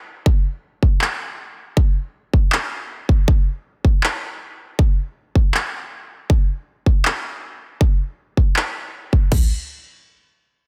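Dreamy and emotional, this future bass fragment, cut from a longer piece, moves at 159 BPM in 4/4 with a half-time feel. A big-room dance drum kit enters at 0.3 s and sits up front, its punchy kick joined by crash cymbal and toms in a layered, produced electronic sound. Electronic handclaps arrive at 1.0 s, also close and stacked in layers, sitting a little lower in level than the kit. Both percussion parts carry a gritty overdrive that gives them a hard, saturated edge. A digital ambience surrounds the parts, the dense, heavily limited modern master keeps the sound tightly packed, and the music shifts into a new section at 9.3 s.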